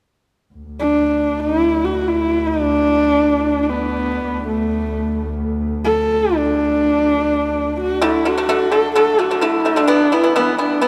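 A dark, husky horsehead fiddle carries this proud, vast Mongolian traditional excerpt, its bowed melody up front with expressive vibrato and portamento over a smooth, even double bass drone that sustains from 0.5 seconds. Near 8.0 seconds the bass drops away and a dry, percussive pipa enters with fingerpicked arpeggios beneath the fiddle. A long cathedral reverb from a church or concert hall surrounds the sound.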